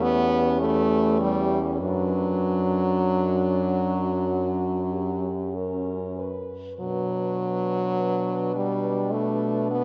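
Classical music for horn quartet, solemn and yearning, unfolds with rubato in a wet church reverb, where a mellow, distant French horn carries the melody in the background above a soft-attacked, smooth-topped second horn line, while a clear, present horn accompaniment and a warm bass horn sit up front, each with light vibrato, as the harmony moves from C#dim/E to Bm/F# at 1.8 seconds and settles on Bm at 6.8 seconds.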